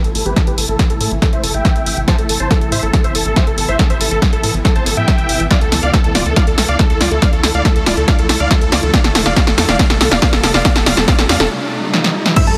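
Uplifting trance at 140 BPM, bittersweet and driving, this build-up moves over Am, Dmadd9 and Fadd9 as a huge, detuned supersaw carries the melody through a filter sweep with sidechain pumping and tape echo, a tight sawtooth sequencer bass with tube saturation sits beneath, an overdriven analog drum machine plays crash, hi-hat and snare fills beside a dry, punchy, up-front kick, a very quiet riser and sub drop arrive at 9.3 s, and after a break from 11.5 s an impact at 12.4 s brings in a lush unison pluck as a second line, set in light digital ambience.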